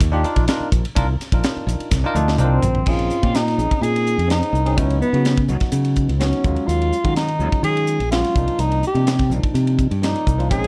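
A straight 4/4 groove at 126 BPM drives this slick electric jazz fusion excerpt, with a crisp drum kit of punchy kick and high-tuned snare and an up-front, fingered electric bass under a bell-like, barky tine electric piano in lush chorus on minor eleventh chords, while drum and piano fills lead into the 2.9 s change and a breathy, intimate tenor saxophone with vibrato and scooped notes carries the melody from 2.4 s, all set in a dark production with light reverb.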